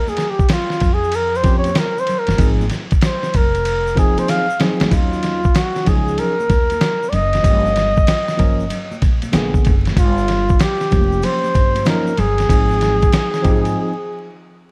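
Dark, vinyl-crackled production with light small-room reverb frames this cool, warm jazz-hop excerpt in swung 4/4, where a breathy flugelhorn with vibrato solos up front from the start over woody pizzicato upright bass, a gritty sampler-style drum kit with a thumpy kick and fat snare whose fill at 4.3 seconds leads into a new section, a worn, mellow tine electric piano entering at 1.4 seconds through a combo amp, and soft congas and tube shaker in the background, before a break at 13.8 seconds.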